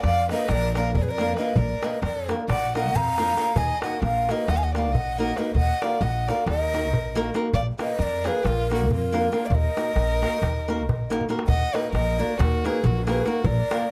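In a straight 9/8 at 273 BPM counted in eighths, this fiery, virtuosic Balkan wedding-band folk excerpt in Eb harmonic minor sets a breathy, hollow ney melody with plate reverb and tape echo over a dark, sul tasto violin second line, bright fingerpicked flamenco guitar with audible finger squeak, a woody pizzicato upright bass up front and a clay-shell darbuka sitting back in a live room, as a drum fill at 11.2 seconds leads into a new section at 11.5 seconds.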